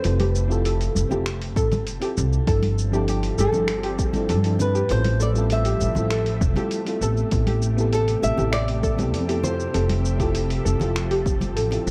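Relaxed and smooth, this sunset chillout excerpt moves in a straight, unhurried 4/4 under a dark production with a moderate plate reverb. A fingerpicked flamenco guitar carries the melody with audible finger squeak, dressed in digital delay and shimmer reverb until it stops at 10.0 seconds. A mellow, warbling FM electric piano and a soft, round pluck with lush chorus and tape echo fill in the harmony and arpeggios. A silky string machine joins at 2.5 seconds with sustained chords in the background, over changes that drift from Fmaj9 through G13sus4 and Am7 back to Fmaj9. Down low, a woody, thumpy upright bass sits up front with tube saturation. The rhythm blends a gritty, overdriven sampler-style kit of finger snaps, hi-hat and shaker, bright congas and bongos tucked behind, and a deep, overdriven electronic kick that enters at 1.6 seconds.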